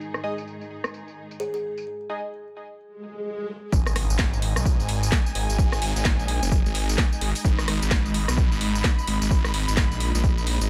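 Aggressive and gritty, this bass house cut runs at 129 BPM in G# minor with a 60% swing on the sixteenths, set in a digital ambience. Distant, lush symphonic strings hold sustained, sidechain-pumped chords throughout, while a garage drum kit of cracking snare, rim click, tambourine and filtered hats ticks along under low-pass filtering. A nasal, band-passed sawtooth chord stab with chorus, phaser and delay pumps in from 0.2 to 2.2 seconds, and a woody kalimba plucks a single short, airy G#4 through a delay. A background electronic swell builds from 3.0 seconds into an impact as the drop lands at 3.7 seconds. There a punchy, up-front electronic kick joins with a thick, swirling detuned saw bass, saturated and phased, pumping low between F#1 and B1 until the fragment ends.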